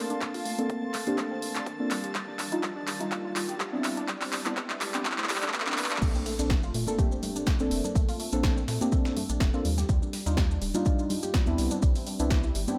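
Lightly reverberant and soulful, this deep house excerpt opens with a build-up in which deep, mellow chord stabs pump through phaser and delay, a warbly, dusty pluck traces arpeggios with dub echo, and a clear chamber violin section and a nostalgic tape-like pad hover in the background, while a very quiet riser and sub drop and a filter sweep lead the way. A punchy, tape-warm analog drum machine plays a fill beside an overdriven electronic kick that was re-recorded in a large room and sits up front. At 6.0 s the drop lands with an impact as a round, dark analog bass enters with a gritty sampler-style soul kit and grainy maracas, and soft-handed congas join in the background from 6.9 s.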